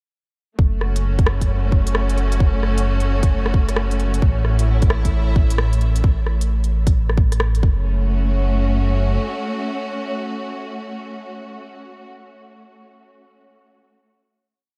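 A dark, detuned sawtooth bass rumbles up front from 0.6 seconds, holding deep sustained roots under a tight, muffled two-step kick and a skittering, shuffled kit of smooth closed hats and rim clicks, all swung in F# minor at 132 BPM in this rainy, melancholic future garage piece. A bright, lush symphonic string section carries slowly shifting chords from F#m to A and back, both it and the bass breathing with sidechain pumping, while an airy, wind-like noise texture holds a high note in the background. The beat falls away near 7.9 seconds, and the bass lingers until about 9.2 seconds as the strings ring out a final note until 12.1 seconds in light digital ambience.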